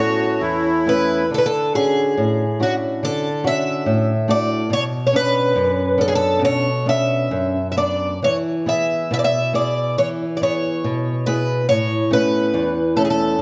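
A nostalgic, tender fado-style ballad excerpt at 70 BPM in 2/4, moving with a rubato feel through chords from Aadd9 to Dmaj7, Bmadd9 and E before returning to Aadd9 at 11.7 seconds. A shimmering, octave-doubled picked twelve-string acoustic guitar carries the up-front melody over a fingerpicked flamenco guitar accompaniment with fresh strings and audible finger squeak, while a reedy, sweet accordion with light tremolo tuning adds a second line only until 1.3 seconds. The parts sit in a moderate scoring-stage reverb with a decay of 1.8 seconds.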